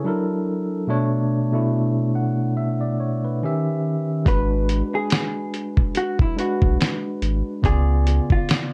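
A 71 BPM groove in 4/4, swung at 57% on the sixteenths, carries this melancholic, nostalgic lo-fi hip hop excerpt. It opens on a clean tine electric piano, heard through its built-in speakers and softened by cassette tape and a low-pass filter, as the harmony moves through altered and minor-seventh chords. At 4.3 s a gritty, compressed sampler-style drum kit with a thumpy kick and fat snare enters together with a round, deep sine sub bass and a dark, fingered hollow-body jazz guitar melody, muffled by its own low-pass filter, all set in a moderate studio reverb with a cassette-tape sheen.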